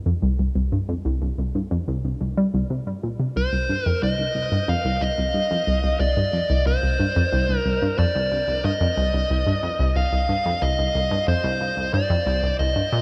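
Ambient piece, mysterious and expansive, built on a round, detuned analog pluck riff with chorus, tape echo and a filter sweep that runs through the whole 13 seconds. At 3.4 seconds a dark, overdriven electric lead guitar enters up front with a smooth picked melody between C5 and F5, also fed through tape echo. A huge, cavernous reverb and a cassette-tape grain wrap the whole passage, which is cut from a longer work.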